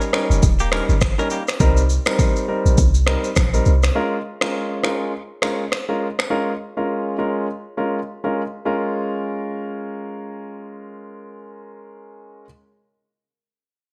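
Hypnotic and mellow, this afrobeats fragment from a longer piece moves at 102 BPM in 4/4 with a swung sixteenth-note feel, set in Bb dorian over chords of Eb7, Cm7 and Bbm7. An intimate concert grand piano carries the accompaniment throughout, its long sustain and audible action noise sitting up front with a polished, present tone. A bright, twangy electric guitar, recorded direct and clean with subtle chorus and digital delay, picks a short riff in the opening moment before dropping out at 1.4 seconds. The electronic afro-pop kit of finger snaps, deep kick, rim click and shaker is overdriven and gritty with vintage 12-bit sampler character and gated reverb, and it stops at 6.3 seconds, while a boomy, sine-based 808-style bass with a noise layer, a fast attack and a decaying tone enters at 0.3 seconds and rumbles low until 3.9 seconds. The bright 1980s-style digital production adds light, small-room reverb, leaving the piano alone for the latter part as the music passes into a second section at 8.7 seconds.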